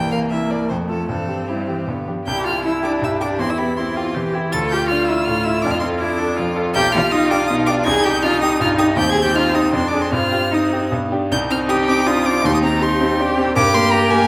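A bright, brilliant grand piano sits up front in this stormy, dramatic excerpt from a quick classical-period movement for piano quartet, moving at 160 BPM in 3/4 as it accompanies a clear, smooth violin melody, bowed with vibrato close at hand. A rich cello carries the second line while a focused, distant viola fills in the accompaniment, both bowed with vibrato. The music opens in C major and darkens into C minor from 6.8 s, all set in a wet recital hall reverb.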